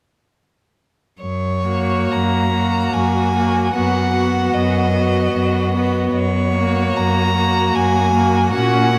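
Classical chamber music for string quartet, this is a slow, romantic movement in F# major, moving at 75 BPM in 3/4 with a serene, tender mood and a freely breathing rubato feel. The first violin carries the melody up front with a rich, focused tone and vibrato, sitting alongside the cello, which enters at the same moment at 1.2 seconds and anchors the bass with a clear, smooth-topped sound. At 1.7 seconds the second violin joins on a close, clear inner line on F#4, while the viola adds accompaniment from a more distant position, its tone rich and even. Every player is a single bowed instrument, and the harmony moves gently from F# to B over F# and back to F#. A huge, wet reverb places the quartet in a vast, echoing space, letting the sound bloom and linger in this fragment cut from a longer piece.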